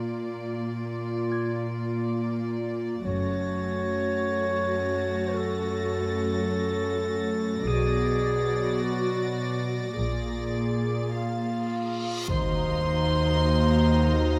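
A mysterious, ominous cinematic passage, cut from a longer piece, opens with a floating, sul tasto violin section carrying the melody over a mellow, distant solo clarinet, dark, lush violas and soft-attacked cellos up front, while a fingerpicked concert harp sits in the background. From about 3 s a second, close violin section adds pure, high texture and a rich double bass section joins, all in a moderate recital hall reverb. A huge, dark reverse cymbal at 11.7 s leads into an impact at 12.3 s, where a woody violin line with vibrato emerges in the background and the harp takes up a ringing riff.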